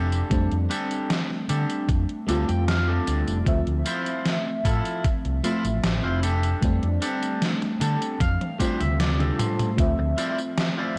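A twangy electric guitar at the edge of break-up opens this dreamy, woozy vaporwave excerpt, playing a riff over a dark, round, overdriven fingered electric bass that sits up front. A gated 80s digital drum machine soon joins with hi-hat, tambourine, toms and a gated-reverb snare, along with a thumpy electronic kick that sounds re-recorded in a small room. Underneath, an FM electric piano layered with a soft pad supplies lush, detuned accompaniment, its fast attack decaying into a chorused shimmer. Clean electric guitar fills slip in around 1.9 seconds and again later, while a drum fill arrives at 8.2 seconds, leading into a brief new section at 9.8 seconds. The harmony drifts slowly between F6/9 and a rootless Dm9, giving the piece a hazy, suspended feel under a light reverb.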